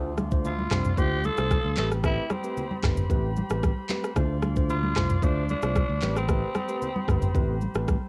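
A straight 4/4 afrobeats groove at 113 BPM, built on an up-front electronic afro-pop kit with a knocking kick, handclaps, rim click, shaker and toms, very quiet ringing congas under soft hands, and a warm, up-front fingered electric bass, carries this sultry, mellow D dorian passage, where a clean tine electric piano and a vintage brass ensemble holding sustained chords move between Dm7 and Am9 while a breathy, raspy tenor saxophone solo with scooped notes and vibrato growls from 0.5 seconds, the piano, brass, drums and saxophone each wearing a cassette-tape patina in a small home room.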